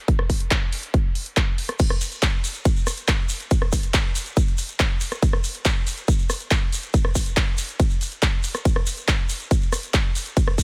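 A punchy, up-front electronic kick drum and a layered big-room dance kit of crash, ride and hi-hat cymbals, handclaps and rim clicks open this driving, euphoric trance passage at 140 BPM in a straight 4/4. At 1.8 seconds a grainy, mellow shekere joins in the background, its acoustic live-room character set against the produced electronic drums. A digital ambience surrounds the parts in this short cut from a longer piece.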